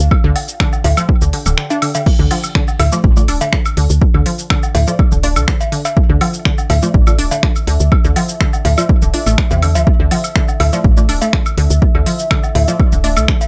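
Lightly reverberant and cool, this sparse minimal techno passage in D minor at 123 BPM rides on a punchy, overdriven kick that briefly drops out between 1.6 and 2.1 seconds, with a woody, round FM bass pumping beneath it, a tape-toned small-room drum kit of crash, finger snaps, smooth hi-hat and shaker alongside woodblock and cowbell, a squelchy, resonant blip pluck riff colored by chorus, cassette grit and tape echo, a moody pad with chorus and pumping sitting quietly in the background, and a muted, filtered dub chord stab with phaser and tape echo arriving at 2.9 seconds.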